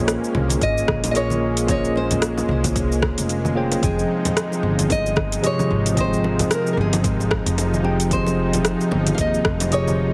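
A clean tine electric piano with a medium tremolo leads the ear, its tone coloured by a combo amp as it carries the accompaniment through this relaxed, smooth sunset chillout excerpt. Alongside it, a small, fingerpicked nylon-string guitar plays the melody through a delay. Underneath sit a thick, nasal pad of detuned sawtooth voices with a soft attack, long release and chorus, and a woody, dark pizzicato upright bass. The groove swings on the sixteenths: an overdriven deep house kit with metallic hats, rim click and shaker enters at 0.1 seconds, soft-handed bongos and congas follow very quietly at 0.3 seconds, and a deep, overdriven electronic kick joins at 0.6 seconds. The harmony moves from Bbm11 to Fm7, and the whole mix is heavily compressed into a radio-like sound with a moderate plate reverb and small room ambience.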